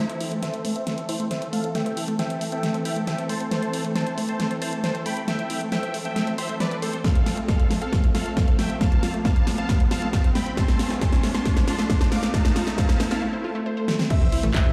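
A huge, thick supersaw carries the melody of this emotional, bittersweet uplifting trance build-up at 136 BPM in A minor, its filter sweeping over sidechain pumping and digital delay while a lush, nasal unison pad holds chords from Am to F and a punchy unison pluck spins arpeggios in the background. Big-room electronic drums with a huge snare, crash, handclaps and hi-hat drive a long fill alongside a background riser, a heavy, tape-warm electronic kick joins at 7.0 seconds, and after a brief break with a swell, an impact lands at 14.1 seconds with a brilliant grand piano note and a punchy, funky analog bass on A1. A moderate recital-hall reverb and large studio ambience give the sound a big-system, bare-room spaciousness.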